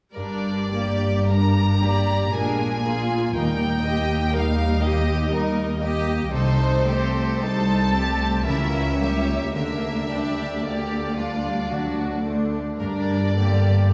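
A wet recital-hall reverb places this yearning, elegiac classical passage in G minor at a distance, where a focused violin section sings the melody with rich vibrato over a clear, intense second violin line, smooth bowed violas, an expressive cello section and soft-attacked double basses in the bass, and a ringing thumb-plucked harp in the background spinning arpeggios, all moving in a rubato 3/4 at 50-62 BPM through about 13.9 seconds cut from a longer piece.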